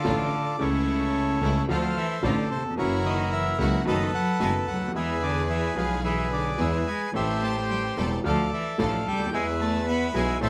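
Tango, tense and sultry with a rubato feel, led by a reedy, full bandoneon set up front with plate reverb, over a smooth, focused bowed cello second line, a woody, boxy upright piano accompanying in the background, biting string-section stabs, and an earthy, distant bowed double bass that enters at 0.1 seconds, heard through close, detailed microphones in a light room reverb.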